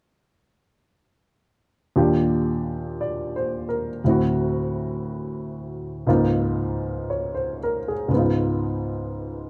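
A baby grand piano enters at 2.0 s, playing an intimate, romantic jazz accompaniment at a slow 59 BPM with a gentle swing, moving through Ebmaj7, D9, Db6 and Db9 until 9.5 s. The piano sits up front with a natural, close tone, short sustain and audible action noise. The dry 1970s-style studio sound carries only light reverb, and the passage is cut from a longer piece.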